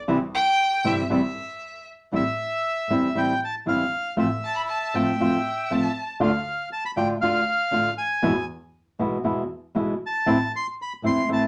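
Tango in A minor at 118 BPM with a rubato, sultry and passionate feel, cut from a longer piece, opening with a violin solo as a bowed double bass with focused vibrato holds the low end and a dark, thumb-plucked flamenco guitar sits up front in accompaniment. From 2.2 s a reedy, bright, close-miked bandoneon takes the melody, full and dry, while the clear violin, up close with its own vibrato, carries a high second line until 6.1 s. The harmony moves from C through Am7, F/A, Dm and E back to Am, set in a wet studio ambience.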